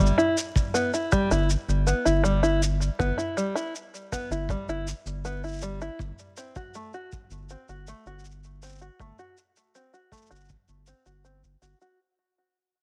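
A fingerpicked open-back banjo opens with plunky, twangy arpeggios softened by a low-pass filter and trailed by delay, over a round, deep analog bass and a muffled shaker, all wrapped in studio reverb and vinyl crackle in this playful, delicate folktronica excerpt. A punchy, brushed kick drum with a rolled-off top joins at 0.6 seconds, and the harmony later moves from Em/G to Gsus4 at 6.0 seconds. The whole passage fades out across its 12 seconds.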